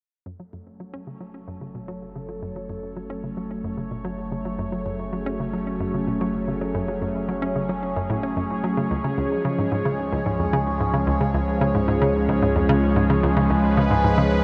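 Hypnotic and cosmic, this ambient, sequencer-driven space music moves at 111 BPM in a straight 4/4 in F# minor, cut from a longer piece. A swirling, detuned sawtooth pad holds sustained chords up front, its slow attack and long release shaped by phaser and chorus. Alongside it, a hollow, bouncy square-wave pluck with a noise layer repeats a riff with a fast attack and short decay, colored by chorus and tape echo. Beneath them, a round, deep analog bass blends square and sine tones with a wave-folded edge, sitting mellow and low in the mix. All three parts fade in together from 0.3 seconds, and the harmony rests on F# minor before shifting to C# at 8.9 seconds. A huge, wet reverb with a 7.2-second decay places the whole piece in a vast, echoing space.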